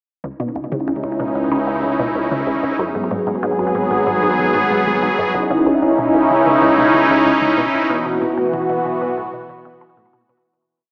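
A straight 4/4 pulse at 94 BPM carries this short, expansive and cosmic piece of sequencer-driven space music in C# minor, tuned to A4 = 439 Hz. An airy, bright, detuned sawtooth pad sits up front with a filter swell and chorus, sustaining chords from C#madd9 through G#m7 to Bsus4, while a squelchy resonant blip pluck with phaser and tape echo repeats a 5-step loop that drifts against the bar. A nasal, pulse-width-modulated analog drone holds the root in the background with chorus and tube saturation from 0.7 seconds, and the whole piece fades out from 7.0 seconds inside a wet plate reverb with a small-speaker sound.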